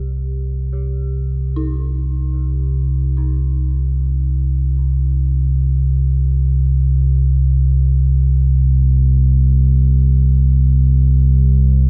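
A deep, rumbling drone of sawtooth and triangle tones sits up front with a slow attack and lush chorus in this dark, ominous ambient drone excerpt, while an eerie, inharmonic FM synth bell fades in across its 11.9 seconds with detuned arpeggios coloured by chorus, phaser and analog delay, the whole set in a moderate plate reverb and an echo-heavy mix.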